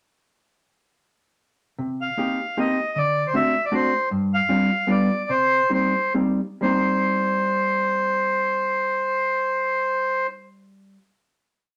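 A reedy, vintage accordion carries a motif-based melody in sentence-like phrases over a dark, clean hollow-body jazz guitar playing close-voiced backbeat chords in this brief, bittersweet and nostalgic musette waltz in C minor, swung in 3/4 at 124-157 BPM, which slows from 4.1 to 6.6 seconds through Cm7, D7, G7sus4 and G7 before resting on a final Cm7 chord, all set in a studio reverb.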